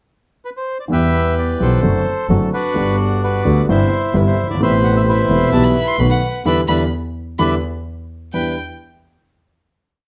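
Melancholic and sultry, this short tango in E minor moves at 130 BPM in 4/4 with a rubato feel. A dark, reedy bandoneon sits up front, opening with a pickup at 0.4 seconds and carrying a motif-based melody built in sentence-like phrases. From 0.9 seconds a warm, intimate, vintage concert grand piano, with audible action noise, deep bass and short sustain, joins a focused, distant bowed double bass with vibrato, both playing the tango rhythm of uneven groups of three and two eighths. At 5.5 seconds a close, expressive violin enters with vibrato and portamento, answering in the melody's rests, before a band accent leads to a final Em7 chord. A moderate large-studio reverb surrounds the players and lends the harmony, which moves from Em through Gmaj7 and B7, a spacious glow.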